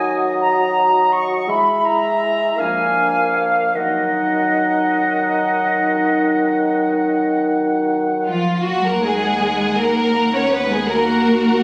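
Heard through a phone in the room, the sound is compressed and soaked in a long, wet reverb with a club-like haze. This excerpt from a slow, solemn romantic orchestral movement sits in E-flat minor, moving in a rubato 12/8 at around 47 to 56 beats per minute, and its mood is melancholic. For the first 8.3 seconds the woodwinds and brass carry it: a small flute group, airy and bright with vibrato and a crisp attack, shares the upper line with a distant, roomy oboe until 7.4 seconds. Meanwhile a mellow, close-miked bassoon accompanies and a French horn section holds sustained chords. The strings then take over, with a lush violin section on a second line over a focused cello section, joined at 8.7 seconds by a smooth, even double bass section and an up-front violin melody held on a single high note. At 10.9 seconds a viola section adds expressive, soft-attacked accompaniment with portamento, rounding out the sombre ensemble.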